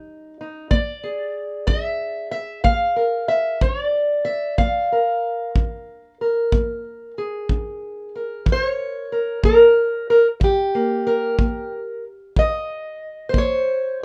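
A fingerpicked parlour steel-string acoustic guitar sits up front, its old strings giving a dark, woody, boxy tone as it carries the melody across this rollicking, swaggering acoustic country blues in Bb mixolydian at 62 BPM in 12/8. A punchy kick drum with a rolled-off top and small-room feel joins at 0.7 s and plays until 13.5 s, while the harmony moves from Eb7 to Bb7 before settling on Eb5. Light reverb wraps this short excerpt cut from a longer piece.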